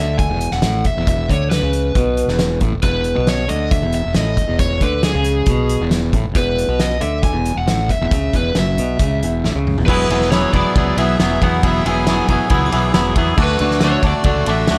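A straight 4/4 pulse at 136 BPM drives this carefree, upbeat indie rock excerpt in E major, where a loose, roomy drum kit with a fat snare and punchy kick sits under a growly fuzz bass, a clean, twangy electric guitar riff up front, and a bright, overdriven garage guitar melody with slapback echo, until a drum fill at 9.4 s tips the tune into E mixolydian and a very quiet, bell-like glockenspiel line rings in briefly at 12.3 s, all wrapped in a small room reverb and a dark production.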